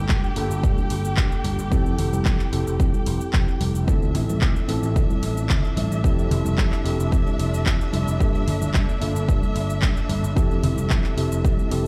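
A mellow tine electric piano with tape echo, lush bowed strings and a growly picked bass open this feel-good, groovy nu-disco passage, all three pumping against a punchy, up-front electronic kick, while a pop kit with bright hats, handclaps and shaker and ringing congas in the background join within the first second, as the chords cycle through Gm9, Fmaj7 and Dm9 in a bare-room sound.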